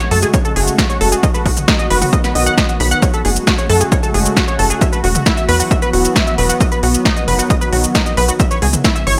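An overdriven, punchy electronic kick drives this soaring, emotional uplifting trance passage, cut from a longer piece, entering at 0.3 s beside a big-room dance kit of crisp hats, shaker, snare and toms that sounds re-recorded in a large room and sits up front. A tight, wave-folded sequencer bass with a plucky filter and moving notch pumps against the kick, while a warbling, vintage-toned sequenced synth spins detuned sawtooth arpeggios through chorus and digital delay. Underneath, a lush, thick unison pad sustains slow-blooming chords that move from F#madd9 through B and Esus2 to C#m, all set in light reverb and digital ambience.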